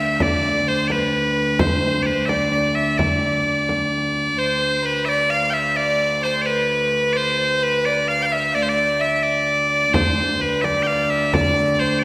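A piercing bagpipe carries the melody from the start over an earthy, bowed fiddle second line and a nasal, reedy viola da gamba drone on D, in this ancient, mysterious medieval dance in D dorian at 86 BPM in 6/8, tuned to A4 = 435 Hz. A deep frame drum played with hard hands enters at 0.2 s, sounds close and dry, drops out at 4.3 s, and returns for a short stretch before the end. The ensemble sits in a reverberant church or concert hall, and the passage repeats its opening section once in this short cut from a longer piece.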